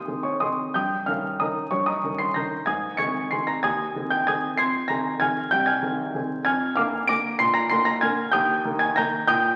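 A dark, mellow baby grand piano opens this short fragment of a playful, graceful classical waltz in Ab major, played solo at 190 BPM in 3/4 with uneven, rubato beats and tuned to A4 = 438 Hz. Close and intimate, the piano has a short sustain and audible action noise as it ranges from C2 to D7 over harmony moving through Eb7/G, Fm7 and Bb7/F before settling on Eb near 8.3 seconds. A wet recital hall reverb surrounds it, and the crackle of a very old 78 rpm record gives the sound an aged quality.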